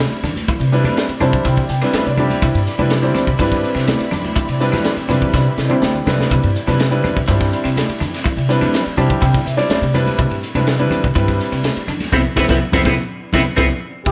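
Light reverb frames this slick, soaring electric jazz fusion passage at 124 BPM in C major on a Cmaj9 chord: an up-front grand piano with audible action noise adds fills, a woody pizzicato upright bass anchors it, a crisp kit with a punchy kick and high-tuned snare adds its own fills, thick-skinned congas sit in the background, twangy, chorus-tinged clean guitar stabs enter at 0.2 seconds, a very quiet vintage sawtooth string-machine cello pad sustains beneath, and a band accent leads to a breathy, plunger-muted trumpet at 14.1 seconds.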